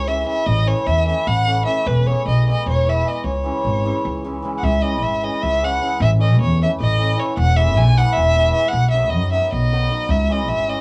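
Fiery and restless, this Balkan wedding-band excerpt drives along in 7/8 at 306 BPM counted in eighths, set in C# minor and tuned slightly flat to A4 = 436 Hz. A single bowed violin carries the melody up front with rich, focused vibrato and a smooth top, while a bright hammered dulcimer rings and shimmers beneath it, both colored by a cassette-tape character. A woody, pizzicato upright bass with steel strings sits prominently underneath as the harmony moves from A to E to C#m, then shifts through A, E and B before resolving on C#m at 10.1 s, all within a light reverb and a homespun cassette sound.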